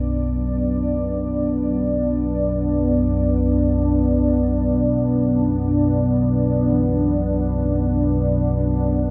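In free time with a slightly sharp tuning, this short, ominous stretch of dark ambient drone, cut from a longer piece, hangs on a single B minor chord for its full 9.1 seconds. A deep, moody pad sits up front, its detuned unison sawtooth layers and sub octave blooming through a slow attack into sustained chords with a long release, softened by chorus and its own built-in reverb. Beneath it, a warbling analog drone with a vintage, wave-folded character and pulse-width modulation holds a low tone, also mellowed by chorus. Far in the background, barely audible gamelan-type bossed gongs trace arpeggios with a round, bronze shimmer and beating overtones. The whole sound is set in a vast, echoing cathedral space with a reverb tail of 5.2 seconds, giving the piece a heavy, foreboding stillness.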